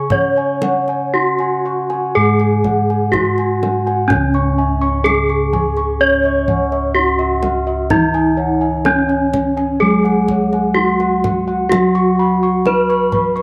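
Javanese gamelan in C# slendro at a slow, serene 63 BPM, this shimmering excerpt sets a vintage, up-front bronze metallophone melody ringing with the beating of its paired tuning over a mellow, padded metallophone accompaniment, while round, close-miked bossed gongs and a soft metallophone spin arpeggios, soft, mellow bossed gongs carry the bass, and a deep kendang enters at 0.1 s, all inside a wet spring reverb as the music moves into a new section at 4.1 s.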